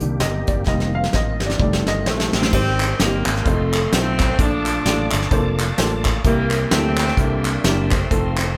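An upright piano with a woody, slightly detuned character and audible action noise opens this short cut from an uptempo gospel number, taking a solo turn over the first 2.5 seconds while the brush kit plays a fill beneath it. The feel is reverent yet jubilant, moving at 129 BPM in 4/4 with a swung eighth-note lilt, and the harmony passes through minor-seventh and suspended chords before settling into brighter major-seventh and dominant colours. A reedy tonewheel organ holds sustained chords in the background through a fast rotary speaker with chorus vibrato and key click, while a round, punchy fingered electric bass anchors the low end. The brush drum kit sits up front with a medium-tuned snare, tight kick, hi-hat and crash cymbal. At 2.1 seconds a mellow, tight saxophone section enters with the melody, its light vibrato sounding distant and roomy, and crisp group handclaps join at 2.8 seconds from a large-sounding space. 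The whole band plays live together in one room, bathed in moderate studio reverb.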